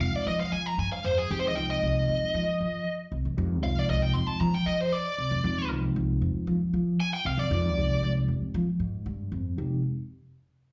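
This intense, nocturnal jazz excerpt opens with an overdriven, bluesy electric guitar soloing up front with slapback echo, over a mellow tine electric piano with subtle chorus and a woody, thumpy pizzicato upright bass holding a Fm9 chord. The guitar solo drops out at 8.1 seconds, while the piano and bass carry on to 9.8 seconds. It sounds like a live club gig heard through the venue's PA, with light room reverb.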